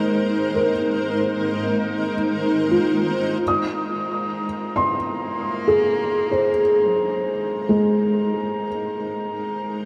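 Drenched in a huge, wet reverb with a long tail, this short ambient fragment, cut from a longer piece, feels peaceful and weightless as it drifts in free time. A cloudy, evolving granular pad sits up front with sustained chords, its detuned, sine-based body carrying a slow attack, a long release and its own built-in reverb and shimmer, and it fades in from 3.4 seconds. Beside it, a felt-muted upright piano plays soft, intimate arpeggios, its boxy, thick-felt tone showing audible action noise and trailing through shimmer and a diffuse ambient delay. In the background, a glass harmonica holds a pure, ethereal high note as a smooth texture. At 3.4 seconds a single bowed cello fades in with a dark, woody melody full of vibrato, washed in shimmer and delay, and it stops at 8.6 seconds while the pad, piano and glass harmonica carry on.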